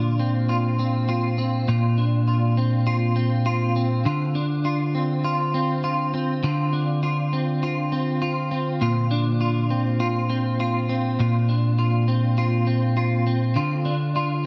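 Dream pop with an ethereal, blissful mood, this short excerpt features a lone clean electric guitar, picked, compressed and up front, its warm tone shimmering through ensemble chorus and digital delay over Bbadd9 and Dm7 chords, all bathed in a moderate plate reverb.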